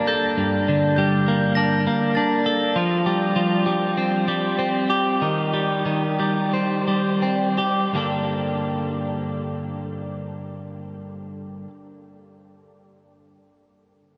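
In a straight 4/4 that slows between 2.8 and 8.0 seconds within a range of 80-101 BPM, this brooding, cinematic rock excerpt in G minor sets a clean, compressed twelve-string electric guitar up front, picking arpeggios through spring reverb and diffuse ambient delay over Gmadd9, Fsus2 and Cm/Eb until 11.7 seconds, while a bell-like glockenspiel, struck with soft plastic mallets and echoing with its own diffuse delay, rings high arpeggios in the background for the first 2.8 seconds, the whole dreamy mix soaked in a huge ambient reverb.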